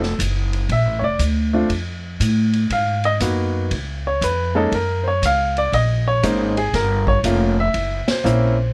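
A short cut from a longer jazz piano trio opens with piano, upright bass and drums all sounding together, settling into a cool, swinging groove in four with a firm swing on the eighth notes. The baby grand carries the melody, sitting up front with a warm, natural tone across its middle and upper register. Beneath it the plucked upright bass, strung with gut, is woody and thumpy and also sits close in the mix, while the vintage kit of hi-hat, kick, ride and snare stays further back with dark cymbals, a punchy kick and a rolled-off top. The harmony moves through rich jazz colors, from an opening F(b9) through a rootless Bbmaj7 and Abm9 to a closing Gb7#11. The whole band hits an accent at 8.0 seconds, and the drums fall away at 8.4 seconds, just before piano and bass finish at 8.7. Recorded dry with close, detailed microphones, the trio sounds intimate and immediate.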